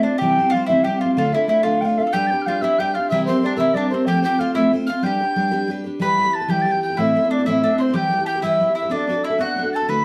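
A lively Celtic jig in 6/8 at 124 dotted-quarter beats per minute, this fragment of a longer folk piece has a bright, dancing mood. A picked steel-string dreadnought guitar sits up front with a full-bodied, bright accompaniment. Beside it, a mandolin plays a softer second line with the round tone of its double strings. The pure, mellow wooden flute carries the melody with vibrato and tongued notes, sounding slightly distant. At 2.1 seconds a breathy, close-miked tin whistle enters high above with a quieter second line, its chiff and unsteady vibrato giving it a homespun edge. The tune moves from G mixolydian into E minor at 6.0 seconds, all set in a wet studio reverb with a dark, warm production.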